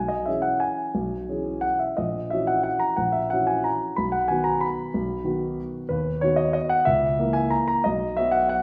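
A concert grand piano carries this sparkling, elegant classical waltz alone, its warm tone anchored by a deep bass and placed up front. The piece moves in 3/4 at roughly 167-200 BPM in B major, with a rubato feel that lets the triple metre breathe and stretch. Across its range, from A#1 up to B5, the harmony travels from C#m7/B through F#7/A# to a settled B chord at 4.0 seconds, then passes through B/D# and A#dim/C# before coming home to B at 7.9 seconds. A wet large-studio reverb with a 1.2-second tail surrounds the playing, and the room sound places the listener further back in the room. This 8.6-second passage is cut from a longer piece.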